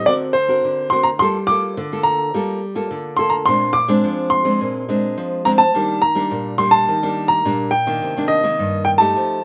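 A clear baby grand piano carries the melody over fingerpicked nylon-string guitar from the first moment, setting a nostalgic, yearning samba in Bb major at 106 BPM. The piano sounds intimate and natural, with long sustain and audible action noise, while the warm, classical-toned guitar supports it through chords such as Gm9, Bb9, Ebmaj7 and Cm9. Both instruments sit up front in a dry, open-air recording, and this short excerpt ends at 9.4 seconds.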